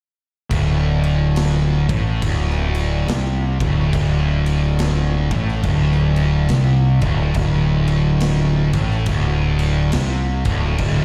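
From 0.5 seconds, a thick, double-tracked fuzz guitar riff and an overdriven, up-front fingered bass open this ominous, hypnotic stoner-doom excerpt with a swung feel, backed by a big rock kit with a punchy kick, medium-tuned snare and bright crash cymbals, all heard through a club PA with light reverb in a fragment cut from a longer live piece.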